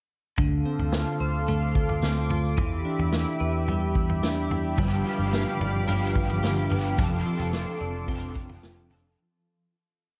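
A slow tom and kick pulse from a vintage drum kit, with a punchy kick and medium-tuned snare, carries this short, haunting dream pop piece at 109 BPM in D dorian, while a foam-muted, round picked bass holds a steady eighth-note line beneath a clean, compressed electric guitar playing a fingerpicked roll pattern through analog chorus and digital delay. A lush, detuned sawtooth and square-wave pad sustains the chords Dm7, Em7, G7 and F6, and at 4.8 seconds an overdriven semi-hollow guitar joins with slow strumming in open chord shapes, treated with harmonic tremolo and ensemble chorus. The dark, hazy production sits in light reverb and small room ambience, fading out from 7.0 seconds until 9.2 seconds.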